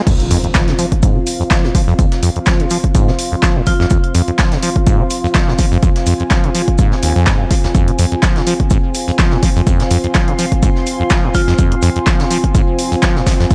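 Acid house at 125 BPM in 4/4 with a light swing on the sixteenths, set in F minor pentatonic, this raw, trippy cut from a longer piece drops straight in at 0.1 seconds and holds its groove throughout. An overdriven electronic kick sits up front, joined by a punchy analog drum machine supplying crash cymbal, handclaps and hi-hat, while a distant, roomy brush kit with hi-hat, shaker and a medium-tuned snare sits in the background under high-pass filtering and sidechain pumping. The squelchy, resonant sawtooth acid bass riff also sits up front, with filter sweeps and tube saturation giving it bite, and it pumps with sidechain compression. Alongside it, a dark, detuned analog pad holds sustained chords with chorus, and a deep, evolving ambient pad adds mellow, reverberant texture in the background, both breathing with sidechain pumping. An electronic impact marks the opening two seconds, and a bright, woody marimba struck with hard mallets plays brief delayed notes at 3.7 and 11.3 seconds. 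The mix is dry, with little reverb, and loud.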